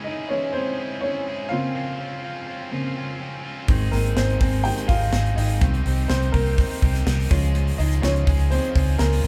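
A woody upright piano leads this hopeful, uplifting piece of piano-driven pop, with a bright, overdriven, double-tracked stack guitar riff beneath it from the start, before a dark, round, foam-muted fingered electric bass and a polished, airy drum kit with punchy kick, medium-tuned snare and hi-hat enter at 3.7 seconds, the band playing live together in one room with a moderate large studio reverb.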